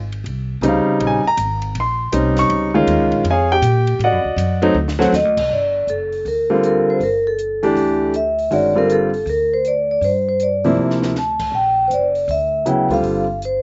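Searching and hypnotic, this modal jazz cut swings at 159 BPM in 4/4, settling into G dorian after a brief opening that moves from Bbm9 to D7b9 before landing on G9sus4 at 5.5 seconds. A woody pizzicato upright bass on steel strings anchors the low end from the start, while a compact cocktail drum kit with dark cymbals, a high-tuned snare and a punchy kick sits low in the mix, adding short fills just before the vibraphone arrives and again near 11 seconds. A concert grand piano sits up front as the accompaniment, intimate and natural, with audible action noise, deep bass, long sustain and a slapback echo on its chords. The vibraphone enters at 5.1 seconds to carry the melody, played with medium mallets and the motor off, its metallic, ringing tone placed close to the listener. The sound is dry and outdoors with little reverb and a dulled top end, and the passage is cut from a longer piece.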